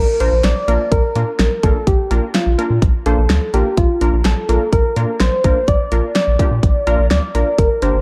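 A straight 4/4 pulse at 126 BPM drives this nocturnal, cool synth-pop excerpt, which rests on a Bb chord and is tuned to A4 = 436 Hz. An up-front electronic pop drum kit with a punchy kick and fat snare joins at 0.2 s beside a round, deep analog bass of triangle and sine tones, while a funky, detuned sawtooth polysynth comp with chorus and a filter sweep sits lower in the mix. Over them, a gentle, keys-like FM lead with vibrato, chorus and slapback echo carries the melody, set in a dark, warm production with light reverb.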